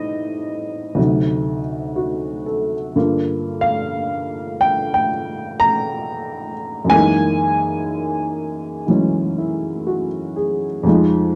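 Solo jazz with a cool, smoky mood, this excerpt from a longer piece features a dark, woody upright piano, slightly detuned and up front with audible action noise, swinging gently through a moderate studio reverb over a progression that moves from Am7b5 and D7b9 to Gm7, then F#13 and Fm7.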